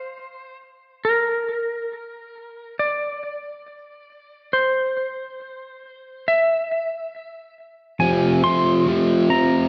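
A big, arena-scale sound with a wet, lingering reverb frames this short rock excerpt in F dorian at a slow 69 BPM, its mood melancholic yet cathartic. A bright, twangy clean lap steel guitar carries the slide melody from the start, set up front and trailed by digital delay over an unaccompanied opening. At 8.0 seconds a double-tracked, compressed distorted electric guitar enters with a low picked riff on an F5 power chord, launching a build-up that runs to the end at 9.7 seconds.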